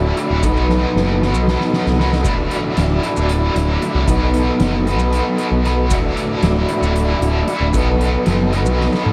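Psychedelic rock in an odd 7/8 metre, this short cut from a longer piece feels kaleidoscopic and trippy, its dreamy mix soaked in a huge ambient reverb. A biting, double-tracked overdriven guitar sits up front with a picked riff coloured by harmonic tremolo, while a growling, overdriven electric bass digs deep beside it. Behind them a tonewheel organ holds smooth, clean sustained chords through a slow rotary speaker and chorus vibrato, with a touch of key click. A soft-mallet drum kit with a fat snare and boomy kick enters at 0.2 seconds in a big, dark room, playing fills early on and again at the very end. Grainy, mellow maracas sit close and dry in the background as the harmony swings between B7 and Dadd9.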